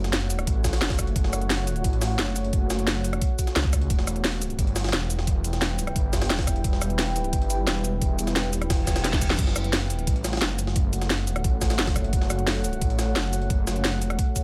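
A light digital reverb frames this dark, futuristic 175 BPM technical drum and bass excerpt in F# phrygian, moving from F#m to Em at 3.9 seconds and back at 9.4 seconds. A knocking, up-front electronic kick arrives at 0.5 seconds beneath a layered drum and bass kit of cracking snare, crisp hats, cabasa, rim click and crash, while a gritty, pitched-up jungle sampler kit with a high-tuned snare sits in the background, high-passed and bathed in large-room ambience. A thick, detuned sawtooth bass with chorus and overdrive drives the low end under a deep, moody pad of slow-attack chords that pumps with sidechain compression, and a faint reverse cymbal rises into a drum fill at 9.0 seconds.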